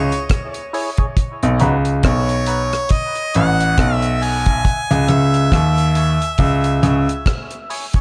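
Dub reggae in C# minor at a slow 69 BPM with a swung sixteenth feel, meditative and spacious, moving from C#m to B and back within this short excerpt cut from a longer piece. A clear harmonica with light vibrato carries the solo melody through dub echo, while a polished baby grand piano holds the bass line up front and a dry, dark drum kit with a tight kick plays hi-hat, kick and rim click. In the background, a hollow, nasal organ stab with chorus, a high-pass filter and dub echo gets a filter sweep across the full 8.0 seconds, all set in a small, echo-heavy room.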